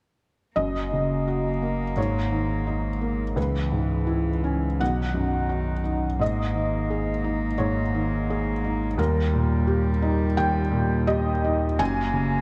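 The recording sits in a dark, warm production on a moderately reverberant scoring stage, framing this neoclassical excerpt for piano and strings. It is fragile and reflective in mood, moving with a rubato feel in 4/4. A felt-muted upright piano sits up front as the accompaniment from 0.6 to 12.4 seconds; its mellow, intimate tone comes with audible action noise that makes the instrument feel close at hand. A single bowed cello carries a second line over the same span, played sul tasto with a soft attack and a pure, floating quality. Underneath, a round sine sub bass holds deep, sustained tones, anchoring harmonies that drift from F# through G#sus2, C#m7, B and D# before settling on F#add9.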